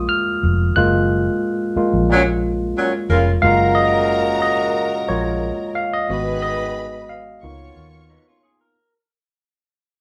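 Lush 1970s-style soul at 90 BPM in F# major with a gentle sixteenth-note swing, romantic and smooth, led by a bright, barky, lightly overdriven tine electric piano soloing up front over a dark, round, foam-muted fingered bass, joined at 2.1 s by mellow jazz-style horn stabs and at 3.4 s by a close, bowed violin section with vibrato carrying a second line as the piece fades out, while a faint, slightly broken-up lo-fi guitar riff slips in at 8.1 s, the band playing live together in one reverberant room over chords moving from F#maj7 to G#m7 and C#13.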